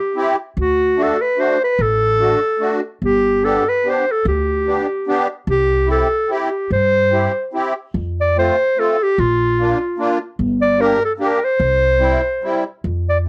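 A clear clarinet opens this bouncy, festive alpine dance-band fragment, carrying the melody up front in a classical style over a 3/4 metre at 147 BPM with a rubato feel. Moments later, at 0.2 seconds, a musette-tuned accordion joins in accompaniment, its reedy, shimmering, airy tone also sitting prominently in the mix. An upright bass enters at 0.6 seconds, played pizzicato on gut strings, giving a woody, dark, thumpy foundation colored by tube saturation. The tune moves from C major into F major at 7.9 seconds, where the harmony passes through Bb and G minor before settling on C. The clarinet and accordion carry a cassette-tape character, and light reverb lends the whole a homespun, home-recorded feel in a brief section taken from a longer piece.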